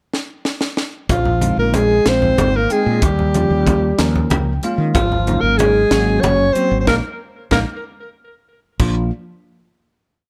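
A rolling 6/8 groove opens this short, complete piece of electric jazz fusion, with a tight funk drum kit, dry and up front with bright cymbals, a high-tuned snare and a snug kick, setting things off with a fill before most of the band enters at 1.1 seconds. Congas with a thin, low-tuned skin sit in the background under soft hands, while a round, dark fretless electric bass drives a syncopated riff through sus4 chords. A vibrato-rich alto saxophone soars up front with a free jazz melody touched by tape echo, joined by a punchy, forceful trombone with scooped notes and octave doubling. A bell-like tine electric piano adds clean, syncopated stabs in rootless voicings, bathed in lush chorus, and takes a brief fill at 4.0 seconds. The funky mood peaks in a band accent before a last drum fill lands the group on a final chord at 8.8 seconds, all wrapped in light reverb and a dark production.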